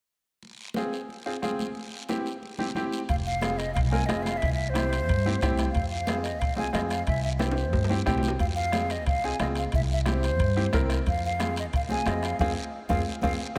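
This driving, passionate cumbia excerpt opens at 0.4 seconds with ringing, high-tuned congas played with soft hands in a distant, large room, alongside a raspy, close and dry guiro, and a bright, polished upright piano joins at 0.8 seconds to outline the F harmonic minor harmony as it moves between Fm and C. At 3.1 seconds the full band arrives: a breathy, mellow silver concert flute carries the melody with vibrato and tongued notes, its close-miked, hollow tone trailed by delay. Beneath it, a woody, thumpy pizzicato upright bass on gut strings anchors the low end, while a soft-beater bombo and ringing metal-shell timbales sit in the background. The tempo is a brisk 181 BPM in straight 4/4, with a drum fill at 7.4 seconds and a C7 chord near the close before a final fill and band accent at 12.4 seconds. A moderate plate reverb bathes the mix in a dreamy glow.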